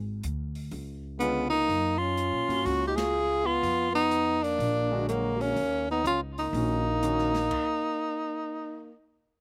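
A swung 4/4 groove at 124 BPM opens this small-group jazz cut from a longer piece in Eb minor, with woody, growly pizzicato upright bass starting at once and an open acoustic drum kit of dark cymbals, medium-tuned snare and boomy kick joining just after. The mood is late-night and smoky. Moments later the breathy tenor saxophone takes the melody up front with vibrato and scooped notes, while a mellow, whispered trombone carries a second line with a soft attack, and a natural-sounding grand piano sits in the background as accompaniment. The band hits an accent at 2.9 seconds as the harmony moves from Db7b9 through Gbmaj7 and Bbaug7 to Ebm7. At 7.5 seconds the rhythm section stops and the horns carry on briefly, their intimate sound dry with little reverb.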